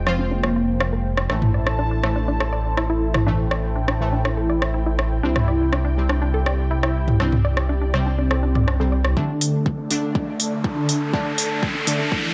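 Melodic techno at 122 BPM in D minor, dramatic and driving: a thick, airy pad sustains chords over Fmadd9, Am and C with chorus and phaser, while a menacing, saturated detuned saw bass pumps up front until 9.1 s; bright, brassy stabs and a punchy unison pluck arpeggio sit in the background through dub echo, and a round, dark synth-brass melody with vibrato rides a digital delay; a deep house kit of smooth hats, rim clicks and toms plays throughout, a deep layered kick arrives at 9.2 s for a build-up on D5, and a riser enters at 10.1 s, set in light reverb and digital ambience.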